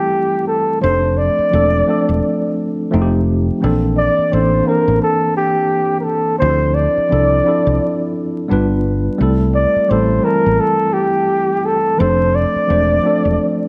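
A breathy, dark flugelhorn carries an intimate, close-miked jazz-style solo with vibrato and scooped notes over a worn, slightly out-of-tune tine electric piano and a round, punchy fingered electric bass that enters at 0.8 s, in a relaxed neo-soul R&B excerpt at 86 BPM with a lightly swung 16th-note feel, moving through rich extended chords such as Bbmaj9#11 and Dm9 inside a moderate echo-chamber reverb and a layer of vinyl crackle.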